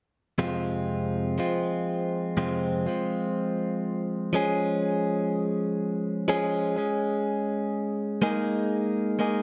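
Longing and emotional, this short pop excerpt cut from a longer piece moves at a slow 61 BPM in 4/4 with a straight feel, set in F minor. A single clean electric guitar, recorded direct and played solo from 0.4 to 9.4 seconds, carries the whole passage, its picked tone bright, compressed and placed up front. The part spans F2 to Ab4 and is treated with spring reverb, while the overall space stays light with a soft top end that stops above 7.8 kHz. The harmony moves from Fm to Db/F and arrives on Absus2 at 8.2 seconds.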